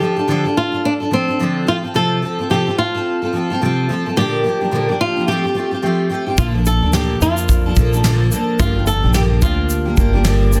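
Acoustic pop in a tender, wistful mood, swung lightly in 4/4, cut from a longer piece, with a fingerpicked flamenco guitar carrying the melody up front over a full-bodied, double-tracked steel-string dreadnought fingerpicking chords from Dm through F/C and Bb6. At 6.4 seconds a woody, thumpy pizzicato upright bass on gut strings and a soft brush kit with a punchy kick, medium-tuned snare and shaker join as the harmony moves to Bbmaj7 and Gm7. A moderate studio reverb gives a natural room feel, and the master is dense and heavily limited.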